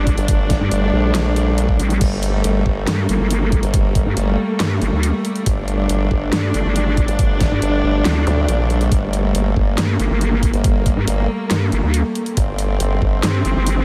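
A nasal, resonant vowel-sweep wobble bass anchors this menacing, aggressive heavy wobble dubstep excerpt at 139 BPM in a half-time feel in G minor, joined by an overdriven sawtooth formant-sweep wobble bass, with a tape-warm knocking electronic kick and a layered drum kit of huge snare, handclaps, bright hats and crash, while an intimate bowed string section holds sul tasto Gmadd9 chords that pump under sidechain and a very quiet zap flickers at 8.3 seconds in a light reverb.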